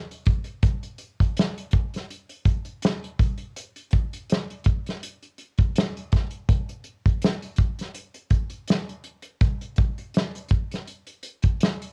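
R&B with a sultry, late-night mood and a lightly swung sixteenth-note feel, this brief excerpt features only an acoustic drum kit of hi-hat, kick and snare, played with bundle sticks and sitting up front. The snare is fat and the kick punchy, captured in a small room with little reverb. A home cassette recording lends the kit a tape-worn grit.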